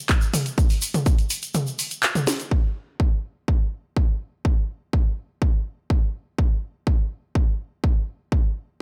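This driving, dramatic techno at 124 BPM in a straight 4/4 opens with a punchy, layered electronic kick up front. Alongside it play a house drum kit of handclaps, hi-hat, cracking snare and toms softened by low-pass filters, and a grainy, bright egg shaker heard in a live room. The kick drops out at 1.5 seconds and a drum fill comes at 2.3; from 2.5 seconds the kit and shaker stop, and the tape-warm kick carries on alone in a close, dry mix with little reverb.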